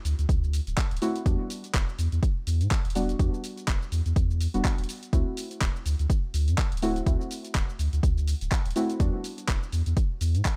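Deep house at 124 BPM in E minor with a swung late-night feel, built on a deep, round sub bass and soft, warbling chord stabs with chorus, tape echo and sidechain pumping moving between D9 and Em9, while a punchy, overdriven electronic kick sits up front and a tape-warm kit of handclaps, hi-hat and shaker, re-recorded in a small room, fills in this excerpt cut from a longer piece.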